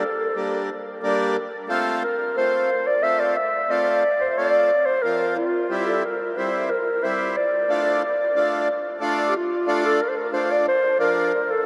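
In a straight-feeling three-beat lilt, this soulful yet festive klezmer fragment, cut from a longer piece, sets a mellow clarinet up front carrying the melody in a classical style over a close-miked accordion accompaniment. The accordion sounds reedy, full and rich, and the two play together throughout the 11.7 seconds as the harmony moves through G minor, F, C and D minor. The recording sits in a vast, echoing space with a huge, long reverb tail.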